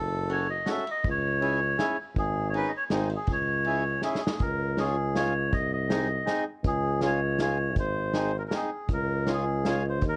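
This short cut from a longer piece has the sound of cassette tape, with a light reverb around the band. It is a bouncy, festive alpine folk dance in three, played by an alpine dance band. A reedy, breathy melodica carries the tune up front, its nasal, plastic-cased tone airy under a plate reverb. A warm tuba with light vibrato holds down the bass in a roomy, classical style, while a mid-forward accordion fills in the accompaniment from 0.3 seconds. An unplugged acoustic drum kit played with bundle sticks keeps time on hi-hat, ride, snare and a punchy kick, with dark cymbals, and a drum fill at 4.0 seconds leads into a second section in a new key.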